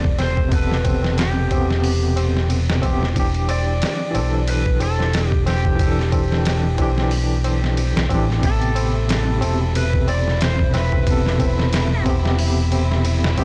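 Trip hop at 91 BPM in A minor with a smoky, cinematic mood, built on an up-front, compressed, pitched-down sampler-style drum kit with a thumpy kick, a warm overdriven fingered bass, a bell-like tine electric piano treated with tremolo and a low-pass filter over Am9 and Em7 chords, an overdriven slide guitar melody soaked in dub echo that stops at 12.0 s, low-tuned tabla in the background, and a lush bowed violin section entering at 8.4 s with sustained chords, all captured in a dry, gritty cassette sound in this piece cut from a longer work.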